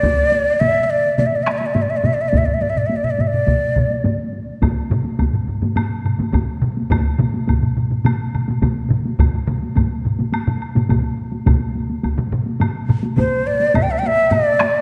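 This ceremonial, powerful Japanese traditional taiko piece, cut from a longer work, layers a solo taiko drum and three taiko ensembles, struck with heavy or hard sticks, some close and dry in the background and others in a small room, all within a long concert-hall reverb. An up-front, breathy bamboo shakuhachi carries the melody with vibrato, tongued notes and audible chiff, dropping out at 4.1 seconds and returning at 13.2 seconds. Meanwhile a faint, woody woodblock joins the percussion from 4.6 seconds.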